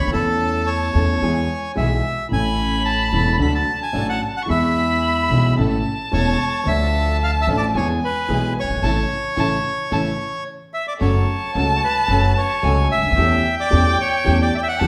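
A large studio reverb gives this passionate, playful tango a wet, roomy sound, with the band heard playing live together in one room. Cut from a longer piece, it sits at 111 BPM in 4/4 with a rubato feel, moving from A major into F# minor at 11.0 seconds. A reedy, bright bandoneon carries the melody up front, while a single bowed violin, dark and distant with vibrato, traces a higher second line. The concert grand piano supplies natural accompaniment with deep bass, and a growly, woody upright bass, plucked on steel strings, anchors the low end. A lush, smooth string section adds very quiet bowed stabs from 0.1 seconds, and the band hits an accent from 8.8 to 11.0 seconds just before the turn to minor.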